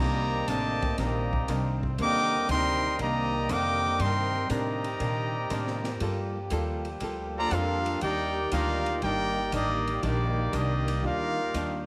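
Big band swing with a dramatic, swinging mood, this brief passage, cut from a longer piece, moves through a Cm9, Gm9 and Ebmaj7 progression in just under 12 seconds. A brilliant trumpet section carries the melody up front with a smooth top, while a mellow trombone section plays a second line with vibrato, sounding distant and roomy under a slapback echo. A second, bright trombone section holds sustained chords with light vibrato, kept very quiet beneath the ensemble. An electric archtop guitar, dark, clean and compressed, sits in the background with picked accompaniment, and a woody, thumpy upright bass on gut strings anchors the low end. The acoustic drum kit enters at 0.5 seconds with hi-hat, ride, a medium-tuned snare and a punchy kick, framed by light reverb and studio ambience.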